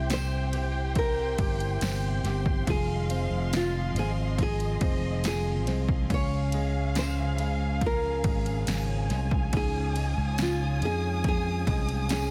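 Pop ballad at a slow 70 BPM in 4/4, melancholic and emotional, moving from C to Fm7 to Db as a fingerpicked nylon-string guitar carries the melody over a growly, up-front fretless electric bass and a punchy, dry analog drum machine with overdriven kick, snare and ride cymbal. A dark, lush violin section adds a second line with vibrato and portamento, while a distant string section holds soft-attacked chords, a worn, slightly detuned upright piano provides woody accompaniment, and a very quiet, twangy twelve-string electric guitar picks clean arpeggios. A jingly tambourine sits far in the background, all within a small room ambience and a dense, heavily limited modern master.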